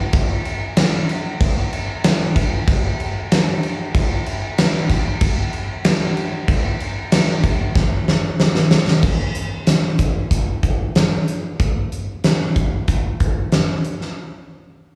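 Rock drum excerpt at 94 BPM in a straight 4/4, anthemic and swaggering, where a huge arena drum kit with a punchy kick, fat snare, hi-hat and crash sits up front in a big acoustic room, heard live through a venue's PA with lush hall reverb, as a fill from 7.8 to 9.0 seconds launches a new section.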